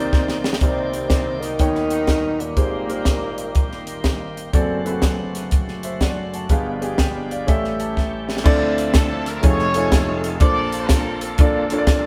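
A warm horn section, grand piano and bright tonewheel organ open this solemn, fervent uptempo gospel excerpt at 122 BPM in a swung 4/4, with a crisp fusion drum kit, punchy kick and high-tuned snare, coming in on a short fill. A breathy tenor saxophone, mellow and scooped, shares the melody with the horns until 4.4 s, while the deep-bass piano sits up front and the organ shouts through a slow rotary speaker with light overdrive. After a piano fill the music moves into D minor at 8.5 s, and the horns return soon after in a moderately reverberant stone room that captures the band playing live.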